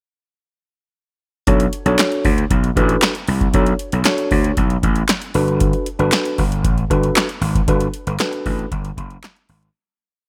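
A growly, overdriven slap bass sits up front in this short early-eighties boogie funk piece, playing a fat, syncopated line with slides and chromatic approach notes from 1.5 seconds. Alongside it, a dry electro analog drum machine drives a mid-tempo boogie beat at 116 BPM in straight 4/4, with a deep kick, a punchy snare layered with handclaps, and metallic hi-hats. A worn, slightly out-of-tune tine electric piano adds mellow, rootless syncopated chords, moving from Bm9 to Gmaj9 at 5.3 seconds. The piece is in B minor and feels late-night and danceable. The bright 1980s-style digital production carries light reverb, and the music fades out from 7.7 seconds to its close.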